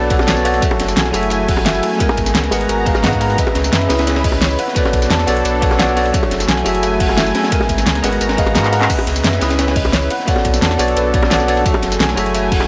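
A straight, rolling liquid drum and bass groove pairs a punchy, tape-warm electronic kick and a pop kit with a fat snare, metallic hats, claps and tambourine, while a gritty, high-passed breakbeat kit and tight, dry bongos sit further back. At 8.6 seconds the kick drops out briefly for a drum fill. Above a round, sine-like sub bass, a bell-like, bright tine electric piano with dub echo accompanies the dreamy minor-ninth chords, backed by a lush, detuned sawtooth pad with chorus, sampler grit and sidechain pumping, and soft, muted upright piano arpeggios whose boxy tone carries audible action noise.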